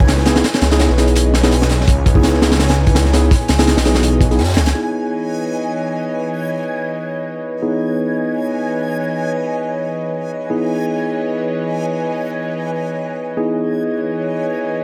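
Lightly reverberant and raw, this frenetic drum and bass and jungle cut at 167 BPM in C# minor opens on a C#m9 drop, with a gritty, saturated breakbeat kit (punchy kick, high-tuned snare, hi-hat, plus a very quiet second layer) and a thick, beating, detuned saw bass driving up front until 4.7 seconds. Throughout, an airy, breathy pad holds chorused, warbling chords while a reversed, granular swelling texture shimmers high above. Mellow, clean tine electric piano stabs with dub echo enter at 0.3 seconds and take a filter sweep from 4.8 seconds onward.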